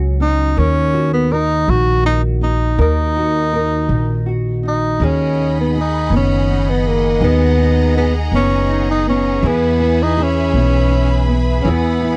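Swaying in a slow six-eight lilt with a straight feel, this romantic pop ballad excerpt opens with a plucked upright bass and a fingerpicked nylon-string guitar together from the first moment. The bass sits up front with a woody, thumpy pizzicato tone, while the double-tracked guitar sounds dark and small beneath it. A tenor saxophone takes the solo melody almost at once, up front and smooth at the top, with a light vibrato and a jazz-inflected phrasing. At 5.0 seconds a lush studio string section arrives with bowed, sustained chords that stay rich yet focused, sitting softly behind the other parts. The harmony moves through F#sus2, D#m, B6 and E, and the dry, close sound recalls a 1970s studio with only light reverb.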